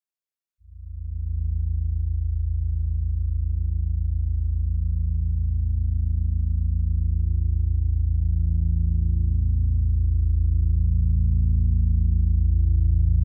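A deep, rumbling drone sits up front in this dark, cavernous ambient excerpt, entering at 0.8 seconds and holding in the low register between A1 and E2 until 13.2 seconds. Its blend of triangle and sawtooth tones swells in through a slow attack, then sustains with a long release, thickened by a lush chorus and its own reverb. The ominous tone unfolds in free time inside a cathedral-like space with a 5.5-second reverb tail.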